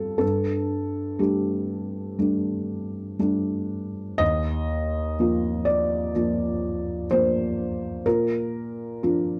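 A dark production with light reverb frames a felt-muted upright piano, heard up front with a soft, thick-felt, mellow tone that feels close and intimate. This neoclassical minimalist piece, cut from a longer work, is reflective and unhurried, played solo in a rubato 4/4 across a range from Eb2 to Eb5. The harmony rests on Gsus2 from 0.2 seconds, shifts to Ebsus2 at 4.2 seconds as a new section begins, and settles on Bb at 8.0 seconds.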